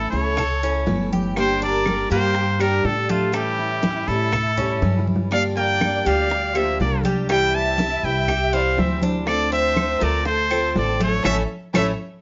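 A straight 4/4 pulse at 121 BPM drives this nostalgic Cuban son and guajira excerpt, where a nasal, straight-muted trumpet with vibrato carries the melody up front over a thumpy, gut-strung pizzicato upright bass, while a lush bowed violin section adds a second line in the background, a boxy parlour steel-string guitar and a metallic, double-strung tres supply picked accompaniment and arpeggios, and background congas, round low-tuned bongos and woody claves keep time, with a drum fill at 4.8 s and a band accent at 11.3 s as the chords move from A through Gm, C and Dm7 back to A.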